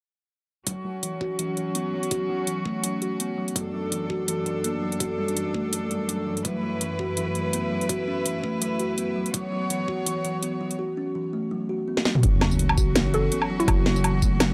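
Cinematic and heavy, this half-time drum and bass excerpt moves at 166 BPM in F# minor, with a light swing on the 16ths and a dry, gritty hardware sound. A close, biting chamber cello section holds sustained chords up front, filtered and pumping, while a woody kalimba rings out arpeggios through tape echo under a filter sweep. The tape-warm kit brings a cracking snare, metallic hats, tambourine, toms and woodblock, joined by a knocking electronic kick that drops out at 10.0 seconds. After a drum fill, the drop hits at 12.2 seconds with an impact, a very quiet sub drop, the returning kick and a growling, buzzy 808-style bass pinned to a low F#. At 13.1 seconds a round, warbling FM pluck with chorus and analog delay adds a brief mallet-like melody before the excerpt cuts off.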